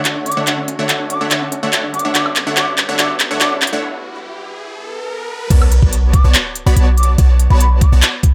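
Set in a light digital ambience with a high-pass filter, this lush, emotional future bass cut at 143 BPM in a half-time feel moves through Dmaj7 and Gmaj7 toward Bm7 in B minor. Dark, distant chamber strings sustain chords behind a punchy, bright supersaw stab riff, a detuned unison pluck arpeggio with digital delay, and a breathy, mellow wooden flute melody with vibrato, all pumping with sidechain, while an overdriven trap kit with crisp hats, claps, woodblock and crash drives a build-up lifted by an electronic riser and swell. At 5.5 seconds the drop lands with a knocking, overdriven electronic kick, a sub drop and a deep, boomy 808-style bass up front, and the flute returns at 6.1 seconds before the excerpt is cut off.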